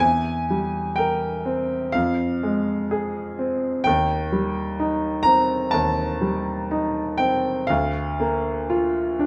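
A bright, up-front grand piano plays alone in this short excerpt from a longer romantic nocturne, its brilliant, open tone ranging from D2 up to Bb5 at a slow 60-66 BPM in 4/4 with a free, rubato feel. The dreamy, tender passage moves through C7/E, Fm, Cm/Eb and Bb/D, tuned slightly low to A4 = 438 Hz. A moderate stone-room reverb lends the piano a gentle halo as the phrase unfolds over its 9.3 seconds.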